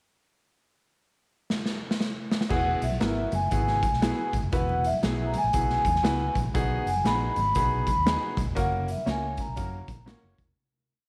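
A swung 119 BPM backbeat from a gritty, punchy garage drum kit drives this joyful, uptempo 1960s-style soul piece, with a drum fill from 1.5 seconds leading into the verse at 2.5 seconds, where a ringing soft-mallet vibraphone carries a motif-based melody over a round, syncopated muted electric bass, close-voiced quarter-note chords from an intimate baby grand piano and very quiet damped congas, joined from 3.0 seconds by short, clean electric guitar chops on the backbeat with spring reverb set in the background, before a fade-out from 8.6 seconds.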